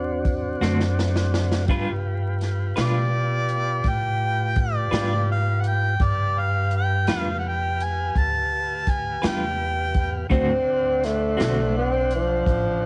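A tonewheel organ holds smooth sustained chords through a slow rotary speaker while a woody pizzicato upright bass sits underneath, opening this laid-back, soulful slow blues in a straight 12/8. A swinging big-band kit of hi-hat, punchy kick and medium-tuned snare has an airy, polished hall sound with a cassette-tape tint, and it plays a fill at 0.6 seconds as a picked, clean electric guitar with tremolo joins in accompaniment. At 2.8 seconds an up-front overdriven harmonica takes the solo melody in a jazz style, full of vibrato, tongue slaps and scooped notes. At 10.3 seconds, as the harmony returns to D7, a breathy, whispered tenor saxophone picks up a mellow subtone second line, distant and roomy yet intimate. The whole cut carries light reverb and small-room ambience, with the muffled top and vinyl crackle of a home cassette recording, and it is taken from a longer piece.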